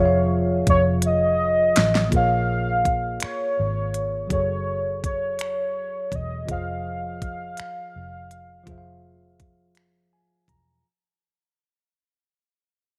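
A lightly reverberant, intimate R&B excerpt at a slow 55 BPM in six-eight, where a velvety, detuned synth lead with chorus and vibrato carries the sensual melody up front over a worn, slightly out-of-tune tine electric piano with light overdrive, a dark, foam-muted fingered bass, and a produced drum kit of knocking kick, fat snare, crisp hats and finger snaps entering at 0.7 seconds with a fill before the music fades out from 2.1 seconds through Dbmaj9, Bbm7, Gbmadd9 and Ab6, closing on an electric piano fill at 9.8 seconds.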